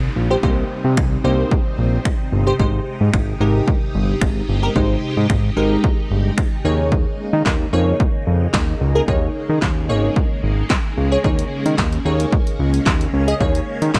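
Energetic and confident, this dance-pop excerpt moves at 111 BPM in a straight 4/4, moving through Cm7, Abmaj7 and Eb7sus4. A punchy analog drum machine sits up front from 0.4 seconds, with a firm kick and snare, finger snaps, handclaps and hi-hat, and a short room on the snare, clap and hats. A fat, thick analog bass built from detuned sawtooth tones carries a filter sweep and sidechain pumping, sitting prominently alongside a crisp, wave-folded wavetable chord stab whose detuned unison plucks decay quickly with a mellow edge. Behind them, a swirling vintage string machine holds bright, evolving sustained chords through ensemble chorus, phaser and sidechain pumping. A downlifter drifts in the background for the opening 2.6 seconds, and the mix stays dry and close, with little reverb.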